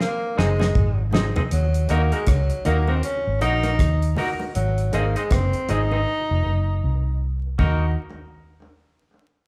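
A dark, round electric bass sits up front in this meditative, hypnotic roots reggae fragment, its muted, amped tone anchoring a low groove with a gentle sixteenth-note swing. A damped 70s drum kit opens with a fill, its fat snare, tight kick, rim clicks, hi-hat and toms sounding dry with a rolled-off top; the kit drops out at 6.1 seconds and returns at 7.6 seconds. A distant, roomy tenor saxophone carries the solo melody in a pop style with light vibrato. Behind it, a bright, picked clean electric guitar plays accompaniment through spring reverb, while a woody upright piano adds intimate stabs from the background, its action noise audible. Very quiet, low-tuned bongos add soft percussion over chords that move between Ab and Ebm. The band sounds as if it is playing live together in one large studio room with moderate reverb, and vinyl crackle gives the fragment a vintage patina.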